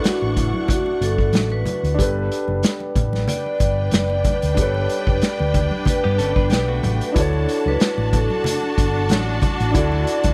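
Lush 1970s-style soul with a smooth, swung feel, cut from a longer piece, where a ringing vibraphone with slow motor vibrato carries the melody over a clear, focused, bowed studio string section with a smooth top, an intimate concert grand piano with audible action noise, distant French horns holding background chords, a dark, round fingered bass and a punchy, up-front vintage drum kit with congas, while a compressed, direct-recorded clean electric guitar adds a brief riff from 6.0 to 7.1 seconds over chords moving from Dmaj7 to Gmaj7 and back, all in a dry mix.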